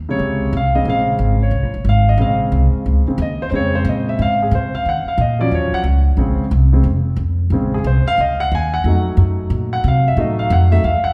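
A brisk swing at 180 BPM in 4/4 drives this sultry big band jazz excerpt in Bb minor, with a woody, pizzicato upright bass setting the pulse from the start and moving through Bbm9, Ebm9 and a tense F7b9. A concert grand piano enters at 0.1 seconds and takes the solo throughout, its natural tone carrying a deep, warm bass. Both instruments sit up front in a wet recital hall reverb that gives the short passage a spacious, churchlike glow.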